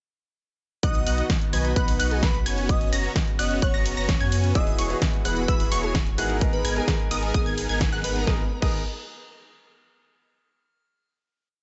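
An anthemic, emotional festival progressive house piece that bursts straight into a drop at 0.8 s, with an up-front, punchy electronic kick driving four-on-the-floor under a big-room kit of programmed hats, huge snare and crash, while a deep, saturated sub bass locked to the chord rhythm, detuned sawtooth supersaw chords and a bright unison pluck doubling them an octave higher all pump to the sidechain alongside a very quiet lush pad and an airy, dreamy lead with vibrato, portamento, chorus and delay, until a clear baby grand piano with gritty 12-bit sampler colour joins in the background at 4.5 s and a band accent at 7.8 s gives way to a final chord at 8.3 s.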